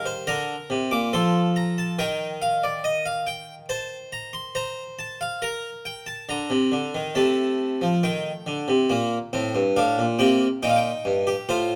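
A solo harpsichord, plucked and airy with the full body of a Flemish-style instrument sounding two sets of strings, sits up front in this serious, solemn baroque-style four-part fugue in 4/4. Captured by close, detailed microphones with light reverb, it ranges from G2 up to D6 as the harmony moves from Bb through Eb and F7 back to Bb. Around 7.2 seconds a new section turns briefly through a diminished chord before settling on Bb and Eb, and this short passage is cut from a longer piece.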